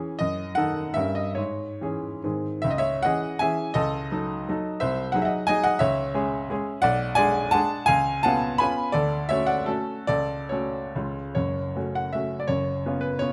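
This romantic-era classical piece is a triple-time dance in 3/4 for solo piano, built on dotted rhythms, with a nostalgic, capricious mood. The tempo sits between 135 and 185 BPM and bends freely with rubato. It opens in C# minor and moves to F# minor at 6.8 s, tinted along the way by diminished chords, a half-diminished colour and a brief Dmaj7 before settling on F#m and C#7 near the close. The baby grand sounds clear and natural, with a short sustain and an up-front presence, spanning F#1 to B5. Close, detailed microphones and light reverb keep the instrument intimate and present, and the clip is cut from a longer piece, ending at 13.3 s just after a fresh section begins at 11.4 s.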